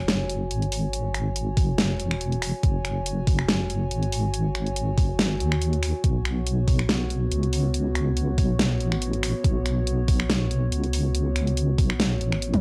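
A cassette-recorded home recording with light reverb opens this dark, cavernous deep dubstep excerpt at 141 BPM in a swung half-time feel, where a deep, chorused wobble bass with a detuned sawtooth bite sits up front beneath a moody, slow-blooming analog pad moving from F#5 to Bsus2 at 6.0 seconds, while a tape-warmed electronic kit of finger snaps, bright hats, toms and a huge snare is joined at 1.6 seconds by a knocking kick.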